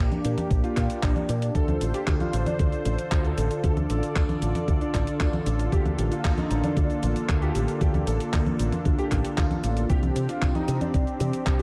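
A concert grand piano carries the melody over a smooth, detuned sawtooth pad with a chorus and a vintage sampler grit, while a fingered electric bass with an envelope filter sits underneath, setting a danceable, bittersweet italo disco mood. A clean digital drum machine joins at 0.1 seconds with cabasa, congas, handclaps and hi-hat, and a thumpy, sampler-style electronic kick enters at 0.5 seconds, both carrying the character of a small room. The piano has a natural tone with deep lows, set off by an ensemble chorus and delay, the bright pad sits up front, and light reverb rounds out this short cut from a longer piece as the chords move from Bb through Dm7 to Csus2.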